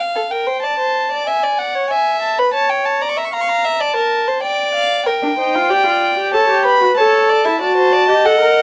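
A dark, lightly reverberant production frames this solemn, driving baroque-style fugue fragment, where a gut-strung violin with light vibrato carries the melody up front from the start, a reedy second violin joins at 0.2 s with a richer line beneath it, and a period-style bowed viola enters at 5.2 s to add accompaniment in a lower register.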